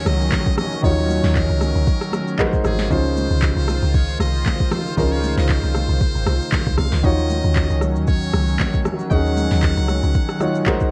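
Late-night and deep, this amapiano cut moves at 116 BPM in Eb dorian with a lightly swung sixteenth-note feel, drifting from Ebm7 through Ab9 to a long Dbmaj9 before returning to Ebm7 at 7.0 seconds. A round, dark log drum bass sits up front with a fast, percussive attack and decaying tail, while an electronic R&B drum kit adds a soft kick, sharp snare, crisp hats, handclaps, rim click and shaker, all roughened by overdrive. High-tuned acoustic congas ring softly in the background as if from a distant large room. A grand piano supplies intimate accompaniment with audible action noise, and a vintage sawtooth pad holds detuned, sustained chords with chorus and sidechain pumping. Over the top, a close-miked trumpet with a metal mute plays a buzzy, thin solo line with vibrato through a digital delay, and a very quiet downlifter sounds over the opening 2.9 seconds, the whole track coloured by a worn cassette-tape ambience with warbly pitch drift.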